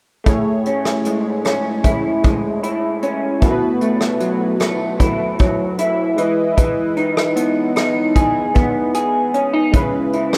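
This fragment has the rough, lightly reverberant feel of a home demo, with a dreamy, hazy bedroom-pop and indie-pop mood in an unhurried, straight 4/4. Up front, an electric guitar through a small old amp sounds slightly broken-up, compressed and lo-fi, its fingered playing coloured by analog chorus and a warbly pitch drift. A soft brush kit enters at 0.3 seconds, just as up front, with a natural acoustic studio-room sound built from a tight kick, hi-hat and rim click. Beneath them, mellow analog keys supply a round, detuned sawtooth tone with a fast attack, decaying notes, a filter sweep, chorus and cassette-tape colour, and they step forward with a brief fill at 5.4 seconds. The harmony drifts from Amaj7 to B7sus4, then Emaj7, and settles on C#m7 at 9.7 seconds, near the close.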